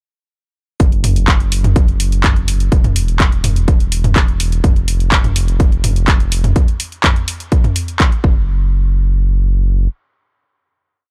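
Dark and melancholic, this short melodic techno piece runs at 125 BPM in a straight 4/4, launching straight into a drop at 0.8 seconds where a punchy, layered electronic kick drives a four-on-the-floor pulse, tape-warm and up front. Beside it, an overdriven analog drum machine supplies closed and half-open hats, low toms and handclaps on the backbeat, while a round, deep analog bass holds sustained roots between E1 and F#1, its sawtooth-and-sine tone colored by ring modulation and sidechain pumping. The drums drop out just after 8 seconds and the bass rings on into a final hit until 9.9 seconds, all captured as a dry, gritty hardware recording.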